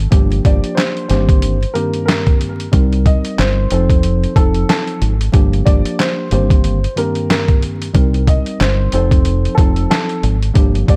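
The rhythm rides a swung boom-bap groove at 92 BPM in 4/4, with a gritty, pitched-down sampler-style kit of thumpy kick, medium-tuned snare, hi-hat and handclaps sitting up front. This short cut from a longer hip hop track feels tough yet reflective, cycling twice through Gm7, Eb6/G and F7. A deep, round fingered electric bass anchors the low end from the start, dark and direct in the mix. A worn, slightly out-of-tune tine electric piano carries the chords with a cassette-tape tint. From 0.5 seconds, a woody, intimate upright piano plays the melody, its action noise audible and its long sustain trailed by digital delay. The production is dark and dry, with vinyl crackle adding dusty texture.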